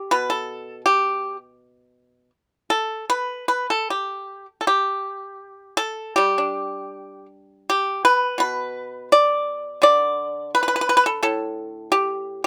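This is a short passage of Chinese traditional music for solo pipa, elegant and serene in mood, cut from a longer piece. The pipa plays alone throughout the 12.5 seconds, moving freely in rubato at a loose 71 to 86 BPM in 4/4, centred in the G gong mode with tuning slightly under standard pitch. Played with fingerpicks, the instrument sounds bright and percussive, ranging from A2 up to D5. The recording places it up front through close, detailed microphones in a dry setting with little reverb, so every pluck comes through clearly. The music falls into two parts, with a new passage beginning at 4.7 seconds and continuing to the end.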